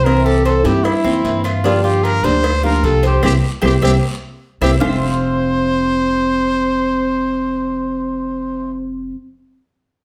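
A breathy, whispered trumpet with vibrato and plate reverb carries the melody up front from the start of this sunny, relaxed Cuban son and guajira excerpt, over fingerpicked nylon-string guitar with old strings, bright, metallic picked arpeggios on the double-stringed tres and growly, thumpy pizzicato upright bass, while tight, high-tuned cowbell and bongos, woody claves and raspy guiro sit in the background until 4.9 s, the band hits an accent from 3.2 to 4.8 s, and the whole recording sounds from further back in a reverberant large studio.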